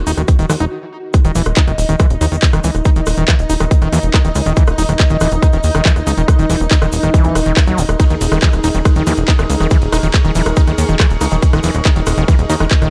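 A dry, tightly produced excerpt of alien, psychedelic trance at 140 BPM in 4/4: an up-front electronic kick and a punchy, funky plucky analog bass sit alongside a squelchy, gritty overdriven acid bass riff with distortion and digital delay, joined by a layered drum and bass drum kit of handclaps, metallic hi-hats, ride cymbal and rim clicks and a grainy cabasa in the background, while a pulsing gated texture of detuned triangle chords and a deep, moody ambient pad with a sub octave sit behind, both chorused and pumping with the sidechain, with a brief stop at 0.7 seconds before the drop lands at 1.1 seconds.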